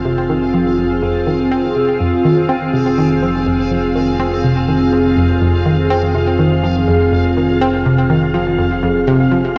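Ambient and hypnotically mysterious, this excerpt sets a morphing, detuned wavetable pad holding sustained chords through chorus, phaser and shimmer reverb against a fat, nasal analog bass thickened by tube saturation, while a bright, wave-folded analog pluck riff with chorus and delay sits up front and a resonant bubbling stepped-filter texture fades in high above, all steeped in a concert-hall reverb and the warbling pitch drift of worn cassette tape.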